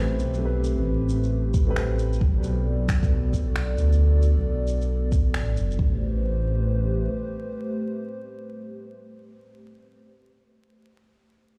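A deep, rumbling detuned saw bass sits up front in this rainy, wistful future garage fragment, its tube-saturated sawtooth tone beating and pumping against the sidechain while a filter sweep runs across it until 5.8 seconds. Above it, a moody analog pad holds sustained chords throughout, its slow-attack, ring-modulated tone thickened by chorus and a sub octave. A mellow, woody upright piano with vintage 12-bit sampler grit and dub echo plays accompaniment only at the very start, dropping out at 2.2 seconds. Layered electronic shaker and finger snaps set a swung 134 BPM pulse in 4/4, and a deep, up-front electronic kick joins at 1.5 seconds. In A dorian, the harmony moves from Am9 to Bm7 and returns to Am9 as a new section begins at 5.8 seconds. The recording carries vinyl crackle and the feel of a big sound system in a bare room, with a large studio reverb.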